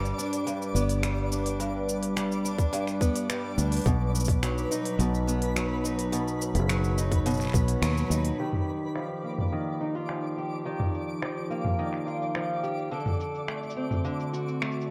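Folktronica at 106 BPM with a playful, pastoral mood, where a bright, boxy picked archtop acoustic guitar plays up-front arpeggios through tape echo over a warbling, nostalgic lo-fi pad and a twinkling, sparkling granular shimmer. A punchy, foam-muted fingered electric bass holds the low end until 8.3 s, a tight electronic kick joins at 2.6 s, and a small-room electronic kit of finger snaps, crisp hats, shaker and toms plays throughout. From 8.4 s the drums, guitar and pad are swept by a filter as the harmony shifts from G and B to Ebadd9 and then D7.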